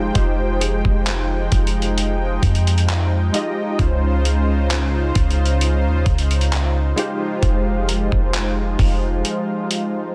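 Keys, pad and bass open together on an Fm9 chord in this late-night, moody contemporary R&B fragment, which moves at a slow 66 BPM in 4/4 with a light 16th-note swing in F minor. Mellow analog keys with a detuned sawtooth tone, chorus and a filter sweep carry the accompaniment over a lush, nasal unison pad that holds bright, thick sustained chords under its own chorus. A clean, boomy 808-style bass with a sine body sits up front, alongside a dusty sampler-style drum kit of kick, hi-hat and handclaps that sounds gritty and overdriven, with a thumpy kick and a small-room character. A very quiet, dark pluck with a wave-folded edge appears twice, once near the start and again at 7.9 seconds, as the harmony moves from Fm9 to Dbmaj9 and back. The bass stops at 9.2 seconds for a brief break, and a synth keys fill closes the fragment, heard through a dense, heavily limited master with little reverb.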